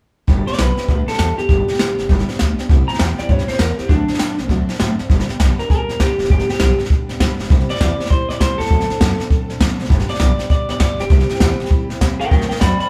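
Swung eighth notes drive this rowdy, upbeat rockabilly in 4/4. A jazz brush kit sits up front with a boomy kick and a medium-tuned snare that sound airy and polished, while a woody, thumpy pizzicato upright bass on gut strings and a full-bodied, picked dreadnought acoustic guitar in the background carry the G, C and D7 changes. From 0.5 seconds a bright, twangy electric guitar through a small old amp takes the melody, slightly broken-up and trailed by analog delay, as the band plays live in one room with moderate studio reverb and moves into a second section at 5.1 seconds.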